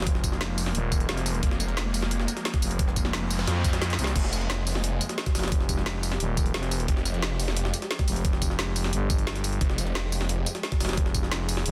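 Dark technical drum and bass at 176 BPM in F minor, this aggressive, mechanical cut from a longer piece is driven by an overdriven, knocking electronic kick and an overdriven drum and bass kit with a woody snare, bright hats, crash and tambourine, while a gritty, pitched-up jungle sampler-style kit with a high-tuned snare sits in the background. Up front, a thick FM bass growls throughout, joined from 1.4 to 10.4 seconds by a snarling, detuned saw bass with a moving notch and sidechain pumping. Behind them, a swarming, wave-folded granular drone sustains an Fmadd9 chord, and a faint noise sweep runs from 3.0 to 4.2 seconds, overlapping a drum fill from 3.8 to 4.2 seconds, all under a dense, heavily limited master with light reverb.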